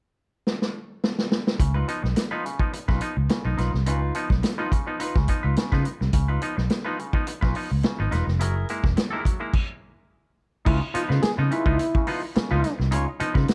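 A round, foam-muted electric bass sits up front beside a vintage drum kit in this strutting, gritty funk excerpt, with the drums opening alone on a fill before their tight kick, medium-tuned snare, hi-hat and dark crash cymbals settle into the groove. From 1.6 seconds, a twangy, nasal clav plays stabs through a combo amp while a compressed, clean picked electric guitar adds accompaniment over Db9 and Gb9 chords, and the band breaks off in a brief stop at 9.5 seconds. A clear trombone with vibrato and a smooth top enters at 10.7 seconds as a second line, heard in light reverb.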